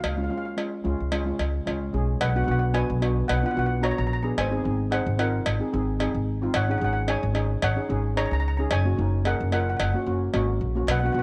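A woody, up-front pizzicato upright bass anchors this festive, sunny calypso excerpt at 111 BPM in F# major, beneath a bright steel pan melody struck with hard rubber sticks, an airy, shimmering second steel pan on accompaniment, and a vintage, band-limited cowbell, set in a small room with a light swing as the chords move from C# through Bm and G#7 to a close on F#.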